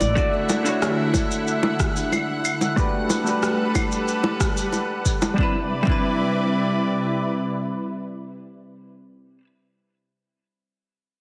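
A lush, detuned unison pad with chorus sits up front in this sunny sunset chillout excerpt at 92 BPM in C lydian, holding sustained chords through Dmaj9, Gmaj9 and Cmaj9. A dark, clean hollow-body jazz guitar plays the accompaniment through a low-pass filter sweep and delay, over a straight 4/4 beat of a deep, up-front electronic kick that runs until 6.1 s, while the electronic shaker, rim click and claves and the round, low-tuned bongos stop at 5.3 s. A bright, fingerpicked nylon-string guitar adds a brief delayed melody in the background at the start, and the mix sits in a wet recital-hall reverb with a heavily compressed radio sound.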